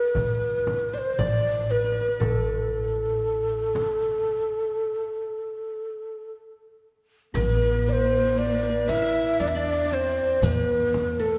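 Melancholic and soulful, this 11.4-second excerpt of an Arabic maqam ensemble in A maqam bayati moves at 117 BPM in 10/8, with a breathy, up-front low ney carrying the vibrato-laden melody over a fingerpicked, bright-edged qanun, woody pizzicato upright bass, soft-handed darbuka and deep frame drum in the background, all pausing together in a stop from 4.8 to 7.3 seconds before a dark, bowed cello and dry, hard-hit riq with dark jingles join for the closing section, the whole ensemble bathed in the long, wet reverb of a church.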